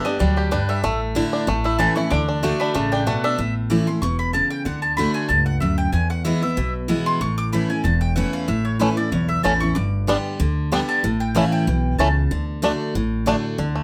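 A moderate studio reverb gives this cut from a longer bluegrass piece a compact sense of room, with the guitar and banjo sitting up front. It is driving and joyful, moving at a brisk 188 BPM in 4/4 with a light swing on the eighth notes, in D major and tuned slightly sharp to A4 = 444 Hz. The picked dreadnought acoustic guitar carries the accompaniment with a full-bodied, fresh-stringed sound, while the pizzicato upright bass adds a thumpy, woody low end. The mandolin takes the solo with double-string stabs that sound warm and woody, stopping at 12.4 seconds. The twangy, percussive banjo plays fingerpicked arpeggios, drops out at 3.4 seconds and returns at 8.8 seconds. The harmony moves through chords such as G, A, D and E.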